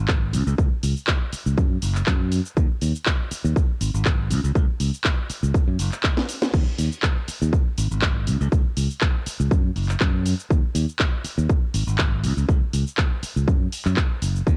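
A bright, growly fingered electric bass opens the excerpt, sitting up front and ranging from Gb1 to Gb2, its tube-saturated tone pushed through a low-pass filter and pumped by sidechain compression. An instant later a punchy, layered electronic kick joins, tape-warm and up front, driving a sensual, groovy filtered disco house feel at 121 BPM in 4/4 with a gentle 16th-note swing. A house drum kit of cabasa, crash cymbal, handclaps, hi-hat and a cracking snare sits lower in the mix, with sidechain pumping on its percussion, hats and cymbals. A short drum fill arrives at 6.2 seconds before the groove carries on through to 14.6 seconds. Both drum parts carry a cassette tape character and sound re-recorded in a small room, and the overall sound is dry, with the intimate grain of a home cassette recording.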